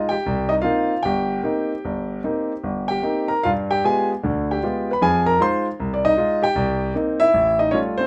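Late-night and smoky, this short solo jazz excerpt in C minor sets a concert grand piano up front, its clear, intimate tone carrying deep bass and audible action noise under a light reverb. At 152 BPM in 4/4 with a swung, rubato feel, the piano ranges from G1 to C6 across a single section that moves from Cm7 through G7b9 and Fm7 back to Cm7 before closing on A7b13 at 7.3 seconds.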